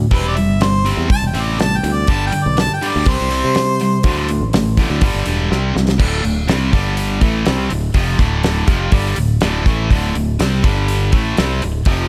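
An up-front, double-tracked overdriven guitar riff and a growly, punchy fingered bass open this swaggering, confident classic rock excerpt at 123 BPM in a straight 4/4. They are joined at once by a dry 70s drum kit with a fat snare and tight kick, and by a distant, roomy harmonica with light vibrato and tape echo that solos until 4.5 seconds. A drum fill at 5.5 seconds leads into a second section built on D and G power chords, all in a close, unadorned room sound.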